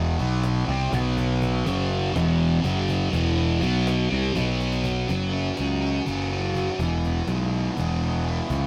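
Psychedelic rock in a hypnotic, mysterious 7/8, cut from a longer piece: a bright, double-tracked fuzz guitar riff with phaser and a round, dark, overdriven fingered bass sit up front, while a snappy cajon with snares stays in the background from 0.2 seconds and plays a fill at 4.4 seconds before the power-chord riff moves into a new chord passage at 5.1 seconds, captured in a rough rehearsal-room recording with light reverb.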